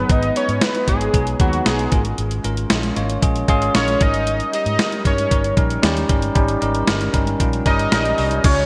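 Urgent and nostalgic, this short cut from a longer piece of 1980s-style pop moves in a straight 4/4 over a G#m to A#m7/G# to D#7 progression, bathed in a lush hall reverb and bright digital production. A fat, detuned sawtooth lead with chorus, vibrato and digital delay carries the melody over a bell-like tine electric piano with subtle chorus, while a dark, foam-muted fingered bass and an up-front, thumpy 12-bit drum machine with gated reverb on crash, hi-hat, kick and snare drive underneath. At 8.4 seconds a very quiet, funky polysynth comp adds a brief punchy stab before the cut ends.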